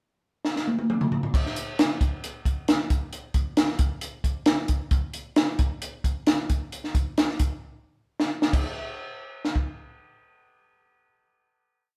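A straight 4/4 backbeat soul groove at 133 BPM drives this short, urgent piece, played on a compact cocktail drum kit of kick, snare, hi-hat, toms and crash cymbal that sounds dark and smooth, with a punchy kick, a high-tuned snare and a rolled-off top. Drum fills open the pickup bar at 0.4 seconds and close the verse at 7.6 seconds before a final hit at 8.5 seconds, with the kit falling silent at 9.7 seconds. The up-front drums sit in a small acoustic room with light reverb, captured like a band playing live together.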